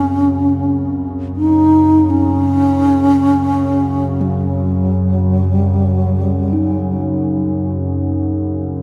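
A cathedral reverb with a 4.2-second decay surrounds this short passage, cut from a longer piece of world meditative music that drifts in free time with a peaceful, calm mood. Up front, a deep, dark ambient pad holds a low drone from start to finish. Its sawtooth and sine layers are thickened with a sub octave, unison voicing and chorus, entering on a slow attack and lingering on a long release. Also up front, a bass flute carries the melody with a breathy, mellow tone, vibrato and tongued notes, its highs rolled off, its phrasing expressive and trailed by a delay until it stops at 7.9 seconds. In the background, a bronze singing bowl struck with a suede striker adds a metallic, ringing texture with slow beating, close-miked, dry and full.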